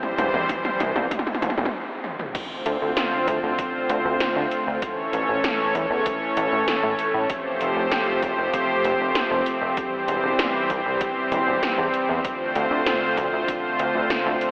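This cinematic, nostalgic synthwave piece in D minor opens on a drum fill from the 80s electronic pad drums, with gated reverb on the snare and toms and metallic hats. Beneath it, a smooth, detuned sawtooth pad holds sustained chords up front, shaped by chorus and sidechain pumping. The fill breaks off into a brief stop at 1.7 seconds, then returns just before the main passage begins at 2.3 seconds. At 97 BPM in a straight 4/4, the chorused synth bass carries the low end with a glossy, nasal pulse-wave and sawtooth tone, a filter pluck with a fast attack and tube saturation, while a punchy electronic kick drum sits in the background. The harmony moves from C/E through Dm7, A and Fadd9 before circling back, and the mix is soaked in a huge, dreamy ambient reverb with a telephone-like sound, the tape-warm drums carrying the air of a large room.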